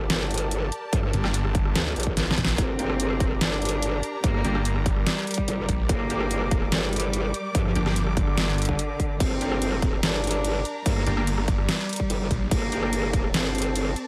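A snarling, detuned sawtooth bass enters at 1.1 s in this chaotic, heavy half-time wobble dubstep excerpt, joining an up-front growl bass whose formant-filtered, chorused wobble sits over punchy overdriven electronic kicks and a layered dubstep kit with a deep snare, hi-hat, rim clicks and crashes. Behind them, a lush symphonic string section holds sustained chords with sidechain pumping, and bold orchestra-hit-like synth stabs carry gritty 12-bit sampler texture, reverb and digital delay. After a short drum fill, a distant, expressive solo cello enters at 2.6 s with vibrato and portamento, trailed by digital delay, all in a digital ambience.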